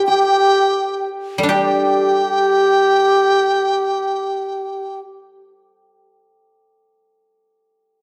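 Chinese traditional chamber music with a festive yet pastoral mood, this brief cut from a longer piece opens with a slowing. Up front, a large dizi carries the melody with a hollow, buzzing-membrane tone, crisp attacks and vibrato, while a low end-blown xiao plays a second line, its bright, reedy straight tone tongued. Further back, a hammered dulcimer adds its own shimmering second line. At 1.4 seconds a guzheng enters as accompaniment, its silvery fingerpicked notes ringing on to 7.4 seconds after the winds and dulcimer stop at 5.0 seconds. A moderate stage reverb gives the ensemble an open, spacious setting.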